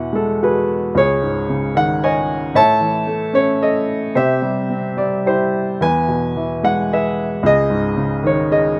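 A woody, natural-sounding upright piano sits up front and carries this short passage of lyrical classical solo piano on its own from 0.0 to 8.8 seconds. The mood is cool and moody, with a rubato feel that lets the triple metre breathe freely. The harmony moves from Eadd9 through C#sus2, A and C before settling back to E and ending on C#sus2, the added and suspended colours keeping the music open and unresolved. The instrument spans from deep C#2 up to A5 and is tuned slightly below standard pitch, at A4 = 436 Hz. Close, detailed microphones and light reverb keep its warm tone intimate, and the passage is cut from a longer piece.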